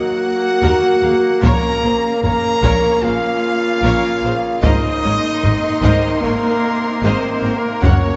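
Dark and epic, this cinematic orchestral film-score passage opens with mellow French horns and bright trombones holding sustained chords beneath a lush string section with expressive portamento, a violin second line and clear, roomy trumpet stabs; at 0.6 s a vibrato-laden violin melody arrives with very quiet viola accompaniment while rich double basses and bowed cellos with a soft attack take the bass, and at 1.4 s distant taiko drums struck with hard sticks join, the whole ensemble sitting in a wet scoring-stage reverb.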